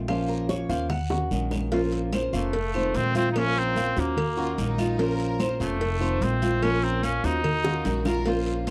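A dry, close studio sound in a 1970s vein frames this sultry, nostalgic Cuban son and guajira passage, cut from a longer piece. Fingerpicked flamenco guitar with audible finger squeak and a thumpy, gut-strung pizzicato upright bass sit under a metallic, double-strung Cuban tres playing arpeggios, joined by tight, high-tuned bongos and cowbell, background congas, a raspy guiro, distant woody claves and brief drum fills. A punchy, vibrato-laden trumpet carries the melody up front from 2.4 seconds, and a rich, bowed chamber violin section adds a second line from 4.4 seconds.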